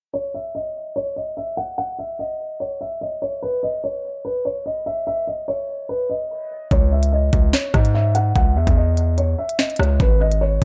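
Drill hip hop at 146 BPM in a half-time feel and C# minor, this menacing, ominous excerpt opens with a dark, boxy concert grand piano carrying the melody alone through a low-pass filter and dub echo, over a filter sweep until 6.7 seconds. At that point a punchy, heavy 808-style bass with a sine body and noise layer arrives alongside an electronic drill kit of knocking kick, sharp snare, crisp hats and rim clicks, both up front as the chords move from C#m to G#m. The whole mix sits in a digital, echo-heavy ambience.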